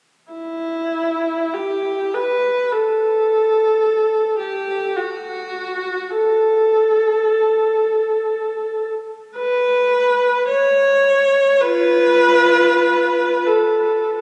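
Meditative and mournful, this brief classical fragment features a single bowed viola playing freely with expressive rubato from 0.3 to 14.2 seconds. The viola's tone is warm, smooth and even, with vibrato. Captured on a phone in the room, it sits in a moderate church reverb with a long, lingering decay.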